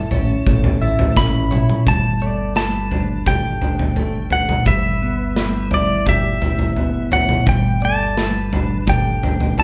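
A bright, twangy lap steel guitar sings the slide melody up front from the first moment of this euphoric, soaring post-rock excerpt, over two clean electric guitars playing arpeggios: a hollow-bodied semi-hollow guitar bathed in spring reverb, and a compressed, picked guitar set back in the background. At 0.1 s a big acoustic rock drum kit arrives up front, its punchy kick, medium-tuned snare and toms driving a straight four-beat pulse, together with a growling fingered bass whose overdrive gives it a gritty, amped bite. The harmony moves from A to Gsus2 at 1.9 s, then through Em/G before settling back on Gsus2. The whole band sounds as if it is playing live in one large studio room, with a moderate reverb that lends the open chords a spacious glow.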